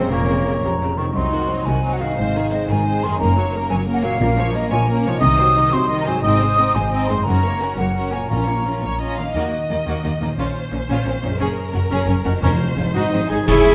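A hollow concert flute stands out in this heroic, cinematic adventure cue, carrying a pure, tongued second line with vibrato through much of the passage, which is cut from a longer score. The mood is adventurous and determined: the music is in Bb minor at 117 BPM in a straight 6/8, and its chords move through Bb minor, C diminished, Ab and Gb before turning to Eb minor and landing on Ab7. A lush violin section sings the melody with expressive vibrato and a soft attack. A second, focused violin section, a smooth viola section, a rich cello section and a distant double bass section fill out the strings, while a ringing, thumb-plucked concert harp plays arpeggios throughout. A tight French horn section sustains chords at the opening and close, joined briefly by a mellow, roomy cor anglais and a clear, vintage-toned clarinet in the background. Articulate hard-mallet timpani mark three points in the passage, dark clash cymbals, a cymbal swell and concert bass drum enter at 11.4 seconds ahead of a full-band accent at 13.5, and the whole ensemble sits in a wet scoring-stage reverb.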